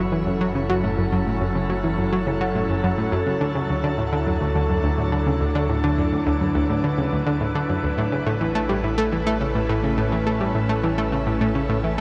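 A round, bright analog pluck sits up front, playing a riff with a fast attack and short decay; its sawtooth and square tones are filled out by a sub octave and treated with chorus and analog delay. Alongside it, also up front, an evolving wavetable pad holds sustained chords, its vintage sine tone morphing and warbling with a slow attack, long release, chorus and its own built-in reverb. A fat, thick analog bass anchors the low end, its detuned sawtooth, square and triangle layers colored by ring modulation and a filter sweep. This is ambient, sequencer-driven space music at 105 BPM in a straight 4/4, cosmic and expansive in mood, moving from F#m7 to Dadd9 at 3.4 seconds and on to Aadd9 at 8.0 seconds. The dark, warm production is bathed in a shimmer reverb with an 8.2-second tail, and this 12-second passage is cut from a longer piece.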